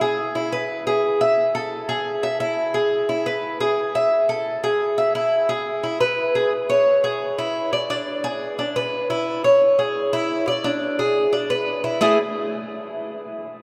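A picked, metallic Cuban tres with double-strung, partly octave-doubled courses plays alone and up front from 0.0 to 12.2 s in this relaxed, sunny Latin piece at 175 BPM in A major, moving between E and A chords before shifting to E6 and E7 colors around 6.5 s. The fragment, cut from a longer piece, is set in a vast, echoing cathedral reverb that lingers long after each note.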